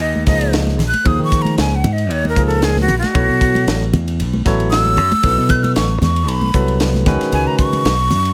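Small-room ambience frames this funky, slick electric jazz fusion excerpt at 115 BPM in 4/4, where a breathy metal flute with vibrato, soft attack and slapback echo solos up front across the whole passage over sus chords moving from Eb13sus4 to B9sus4 and Db9sus4. A growly, punchy fingered electric bass sits equally forward, while a crisp acoustic drum kit with a high-tuned snare, tight kick, hi-hat and ride pumps in the room with a light 16th-note swing. Damped, thick-skinned congas under soft hands stay in the background from 0.2 seconds, and a barky, clean tine electric piano comps from 0.3 seconds.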